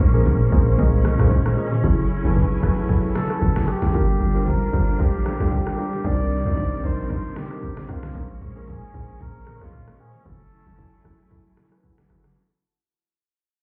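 A 114 BPM amapiano groove swings its 16ths on a deep house drum kit with a gritty, tape-toned kick, snare, rim click, shaker and hats, while a hollow, bouncy log drum bass sits up front and very quiet bright bongos and congas enter at 0.3 seconds. A mellow tine electric piano and a lush, bowed string section with sidechain pumping carry soulful, late-night minor-seventh chords starting on Bbm7, as a dark organ stab with chorus and delay pulses in the background. A veiled, bucket-muted trumpet plays a distant solo melody with delay from 3.2 seconds, the electric piano adds a fill from 11.3 seconds, and the whole drop sounds muffled through a wall into a club space as it fades out.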